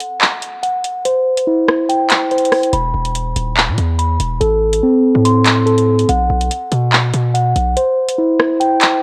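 A half-time drill groove at 143 BPM sets a tense, ominous mood, with metallic hi-hats, handclaps and rim clicks up front, while a mellow, clean tine electric piano plays arpeggios through a low-pass filter sweep and tape echo over C, E5, Am and B5. After a break, a heavy, aggressive distorted 808-style bass with a noise layer and fast, decaying attack enters at 2.7 s, and the kick drops away at 7.8 s. The whole cut sits in a lush hall reverb and carries the warble and pitch drift of worn cassette tape.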